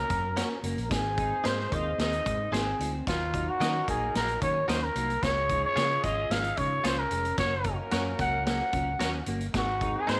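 Uptempo 1960s-style soul in Db major at 111 BPM, this warm, danceable clip cut from a longer piece is led by a growling trumpet up front, raspy and gritty with scooped notes and vibrato, while a dark, distant horn section with tape echo and octave doubling carries a second line behind it. A round, punchy fingered electric bass and a vintage drum kit with a punchy kick and rolled-off top drive the groove, as a worn, reedy electric piano, slightly out of tune, sits in the background. Two bright, twangy clean electric guitars fill out the mix: one plays a riff through analog chorus, and the other, recorded direct, adds stabs from 0.4 seconds over chords moving from Gb through Ab, Ebm and Db, all in light reverb.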